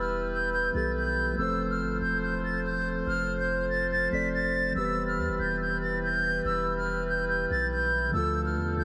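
A flute, tine electric piano, brass ensemble and 808-style bass open together in this cold, menacing hip hop piece at 142 BPM in a half-time feel, in E phrygian, moving from Em to F, back to Em at 4.8 seconds and on to Dm. The airy concert flute carries the melody high and up front with expressive vibrato and a delay, while the clean, mellow tines comp beneath and a classical-style brass section holds sustained chords. A deep, decaying sine bass anchors the low end, and the whole mix sits soaked in a huge, dreamy reverb.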